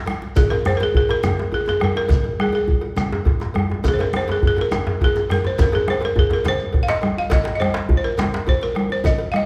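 A straight 12/8 pulse at 138 BPM drives this earthy, festive West African drum ensemble piece in Ab major pentatonic, opening with a short drum fill before the balafon and shekere join at 0.4 seconds and a second djembe follows at 0.5 seconds. A deep, dark bombo anchors the bottom while bright, damped congas struck with hard hands, a tight and cracking djembe, a medium-tuned djembe in the background, a very quiet metallic cowbell and a grainy, mellow shekere fill out the percussion. Up front, a woody, buzzing balafon played with hard rubber mallets carries the melody between Ab4 and F5, all set in a reverberant recital hall heard from further back in the room, in a passage cut from a longer piece.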